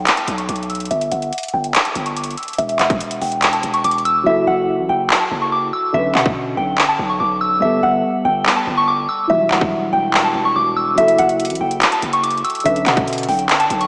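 A soft, pure FM synth bell carries the melody through an opening filter sweep, washed in chorus, phaser and diffuse ambient delay over a saturated, aggressive distorted 808 and a trap kit of hard-clipped kick, handclaps and metallic, tape-tinged hi-hats, before a dark, boxy concert grand with audible action noise enters at 4.2 seconds and the hi-hats drop out from 4.3 to 11.0 seconds, giving this dark, melancholic half-time trap hip hop excerpt at 143 BPM a dreamy, small-speaker sound steeped in lush hall reverb.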